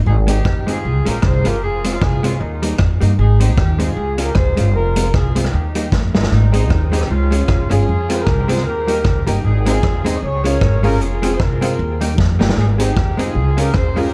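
A woody, pizzicato upright bass opens this bouncy, upbeat ska excerpt. It is joined almost at once by a mellow, distant horn section carrying the melody with light vibrato and dub echo, a dark, clean hollow-body jazz guitar in accompaniment, and a gritty, saturated vintage drum kit with punchy kick, snare, rim clicks and hi-hat that fills at 5.9 and 12.2 seconds. A jangly, metallic tack piano then adds background stabs with its own dub echo from 6.5 seconds, over a repeating Ab–Db–Fm–Eb cycle in a dry, dusky mix.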